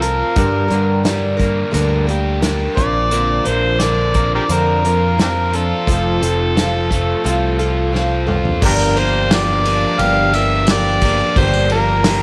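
Reflective and dusty, this folk rock and heartland rock excerpt is led by a gritty, amplified, overdriven harmonica out front, playing with tongue slaps over a shimmering, woody twelve-string acoustic guitar and a dark, double-tracked overdriven electric guitar riff. A warm picked electric bass and an acoustic drum kit with bundle sticks and a medium-tuned snare hold the groove in a small, lightly reverberant room. After a drum fill at 7.9 seconds, the music moves into a new section at 8.6 seconds, where a jingly tambourine joins in the background.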